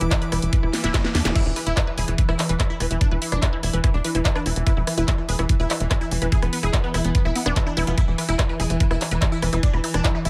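Psychedelic trance at 145 BPM with a driving, psychedelic mood, this excerpt pairs a knocking, up-front electronic kick and a tight, nasal sequencer bass warmed by tube saturation with a layered drum kit of cracking snare, bright hi-hats, handclaps, rim clicks and crash cymbal. A morphing wavetable pad pumps in the background, and a lush, detuned unison pluck riff with dub echo pumps along with it. A soft, breathy pad drifts over the opening until a drum fill from 0.7 seconds and a brief background zap lead into the drop at 1.4 seconds, where a punchy supersaw stab melody with phaser and dub echo enters.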